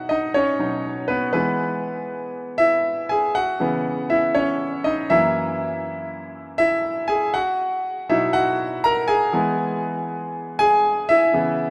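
This pop fragment is an uplifting, warm piece for solo concert grand piano, lasting about 11.7 seconds and cut from a longer work. The piano carries everything alone in a steady, straight four-beat pulse, ranging from deep bass notes up into its upper register. Its tone is clear and polished, sitting up front and present, with short-sustained notes that keep the phrasing crisp. The harmony moves from B to E, through C#m7 and F#7, then settles back on B and E, giving a hopeful, open feel. A lush hall reverb with a 2.8-second tail surrounds the instrument, though the overall mix retains the rough character of a home demo.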